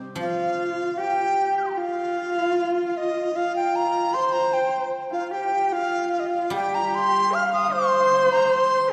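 Graceful and tender, this Chinese chamber music moves at a rubato 76 BPM in 2/4, set in the C yu mode and cut from a longer piece. A bright, silvery guzheng, played with fingerpicks, rings out in its lower and middle register from the opening moment, falls away at 2.6 seconds and returns at 6.5 seconds as accompaniment. Up front, a bamboo dizi carries the melody in a high register with a pure, straight tone, a soft attack, the buzz of its membrane and lifted highs, shaped with expressive phrasing. Beside it, a husky horsehead fiddle, bowed by one player on horsehair strings, sings a rich second line with vibrato and portamento and a smooth top. A wet reverb with a 2.6 second decay places the ensemble in the spacious acoustic of a church or concert hall.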